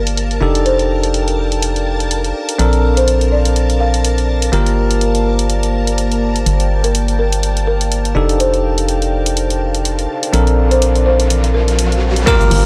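A downlifter opens this deep, moody house excerpt over a hollow, organ-like FM bass up front, bright bell-like tine electric piano stabs and a woody, soft-mallet marimba melody, both carrying tape echo, while a smooth sawtooth pad and shimmering string-machine violins pump under sidechain and a warbly, lo-fi tape-like pad hovers very quietly. A dry analog drum machine with low-passed cabasa, hi-hat and crash runs throughout, all within a gritty digital ambience, until a riser from 10.2 seconds leads to an impact, a punchy kick at 12.3 seconds and brief bongos in the background at 12.5 seconds.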